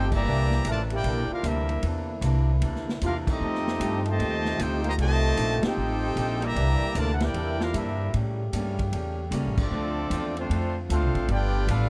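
This big band swing excerpt moves at a joyful 152 BPM in 4/4 with a swung eighth-note feel in C major, played through as a single section of about 12 seconds cut from a longer piece. A brilliant trumpet section carries the melody with light vibrato. Beneath it, a trombone section in bucket mutes plays a veiled, mellow, vintage second line, while a second, close-miked trombone section holds sustained chords in the background. The woody pizzicato upright bass sits up front as the loudest part. A swinging drum kit with dark cymbals, a medium-tuned snare and a punchy kick plays from 0.1 to 11.8 seconds, and a bright, picked parlour acoustic guitar adds quiet accompaniment. The whole band hits accents at moments such as 0.1, 3.2 and 9.5 seconds, the harmony moves from C9 through A7b9 and Dm7 to G9, and the production is dry, dark and warm.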